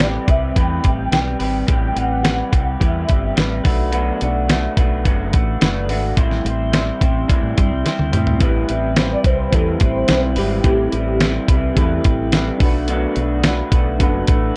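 A straight 4/4 groove at 107 BPM comes from a gritty, compressed sampler-style soul drum kit with a thumpy kick and fat snare placed up front in this hazy, lonely bedroom-pop excerpt in A dorian, where a round, punchy fingered bass and a lo-fi, slightly broken-up electric guitar soaked in lush chorus and warbly pitch drift move over Am9 and Bm7 chords, a velvety, detuned synth lead with vibrato sings, and after a drum fill a mellow tine electric piano enters in the background at 8.4 seconds as the synth lead takes a soft solo.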